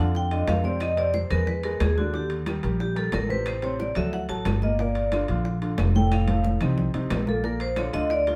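This Afro-Cuban jazz excerpt moves at a brisk 181 BPM in a straight 4/4, lively and sophisticated in Bb major, and is cut from a longer piece. The vibraphone takes a solo melody up front for the full 8.4 seconds, its medium hard mallets drawing a metallic, airy ring shaded by a slow motor vibrato. A warm upright piano with short sustain accompanies, while a woody pizzicato upright bass with steel strings sits forward in the mix. The percussion enters in the first half second: bright, thin-skinned congas and round, low-tuned bongos played with soft hands, close and dry in the background, along with ringing metal-shelled timbales and claves, which sit faintly in the background. The harmony travels from a rootless Bbadd9 through Fm, E7, Ebmaj7, Am, D, Gm9 and F7 before landing on Bb. The band plays live together in one room, bathed in a wet studio reverb.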